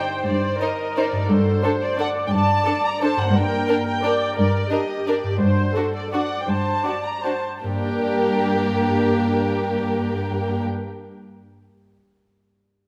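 Sweeping and dark, this classical fragment in G minor moves in a rubato 3/4 at 150-191 BPM, easing into a slowdown at 4.9 s as the harmony settles from Cm/G and D7/G onto G minor. Con sordino violins carry a veiled, vibrato-laden melody between C5 and Bb5, with a second, lusher violin line beneath, soft-edged violas filling the accompaniment, and up-front cellos holding a bowed G2 bass. A concert harp adds mellow, fingerpicked arpeggios that ring on alone until 11.5 s, all set in the moderate bloom of a scoring stage.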